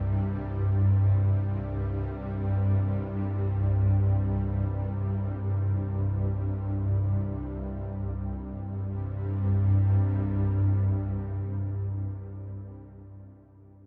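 An ethereal, airy pad carries this short excerpt alone from 0.0 to 12.4 s, sitting low between C2 and G2 and placed up front in the mix. Its mellow, detuned tone blends sawtooth, triangle and sine layers with a sub octave, and it rises on a slow attack, sustains, and fades on a long release. Ensemble chorus, tremolo, delay and its own reverb shade the sound, while a huge ambient space with a 6.6-second decay surrounds it. This is meditative world music in free time, spacious and calm, with a dark, warm production, and the passage shifts into a new section at 7.8 s. Cut from a longer piece, it suits quiet reflection.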